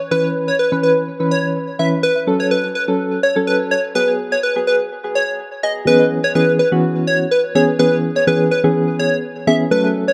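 An echo-heavy mix with moderate spring reverb and a high-pass filter frames this confident, energetic pop clip, cut from a longer piece. It moves at 125 BPM in a straight 4/4 in C# minor, tuned to A4 = 439 Hz. A soft, round electric-piano-like synth keys part carries the accompaniment with a vintage, warbling character from chorus, tremolo and analog delay. Above it, a punchy, catchy plucky unison lead built from detuned square waves with a noise layer sings the melody, and both parts sit up front. A filter sweep drives a build-up over C#m7, F#m and G#m7 until the drop lands at 5.9 s, returning to C#m7 through the end at 10.1 s.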